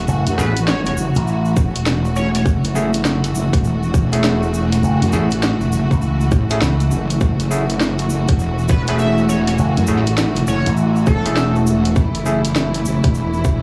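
Glitch hop with a playful, swaggering strut and a swung sixteenth-note feel, this short cut rides a single F#m7 chord throughout. Up front, a clear symphonic string section holds smooth, bowed chords roughened by vintage 12-bit sampler grit and sidechain pumping, while a heavy, detuned wobble bass with chorus churns low alongside a punchy, enveloped slap bass that stops at 11.1 seconds. A drum and bass kit with a cracking snare and hi-hat comes in at 0.3 seconds, joined by a tight electronic kick at 1.6 seconds, with a grainy tube shaker tucked behind. In the background, an overdriven clav plays stringy, mellow stabs through a combo amp, pumping and trailing tape echo. An edgy, tearing sync lead with vibrato, subtle chorus and tape echo states its melody in two bursts, the second arriving at 8.7 seconds. The whole mix carries a dry, hardware sound with transformer saturation and a small room ambience.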